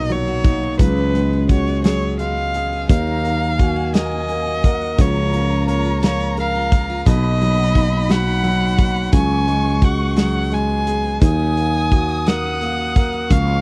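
A loose indie drum kit sits up front with a tight kick and a medium-tuned snare, anchoring this aching, dramatic six-eight pop ballad in Eb minor at 58 BPM, while a growly fretless electric bass sustains beneath and a nasal, boxy solo violin carries the melody with vibrato and portamento. A clear concert grand piano with deep bass and a very quiet, full-bodied picked acoustic guitar fill out the accompaniment over chords moving from Bmaj7 through Db7sus4 and Ebm7, and a dark, lush violin section enters softly in the background at 2.9 seconds with a second line. The sound is dry and close, in the manner of a 1970s studio recording, and this short passage is cut from a longer piece.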